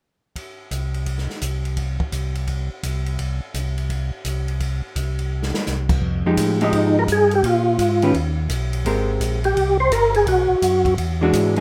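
Soulful and bluesy, this swinging soul jazz organ trio opens with an acoustic drum kit of dark cymbals and boomy kick, joined almost at once by a round, mellow tonewheel organ bass line with chorus vibrato and a slow rotary speaker. After a drum fill at 5.3 seconds the harmony moves into a new chord sequence: a clean hollow-body electric guitar enters at 6.3 seconds to accompany, and an up-front, percussive organ with key click and fast rotary speaker carries the melody from 6.6 seconds. The rough home demo mix sits in a small room with light reverb, cut from a longer piece.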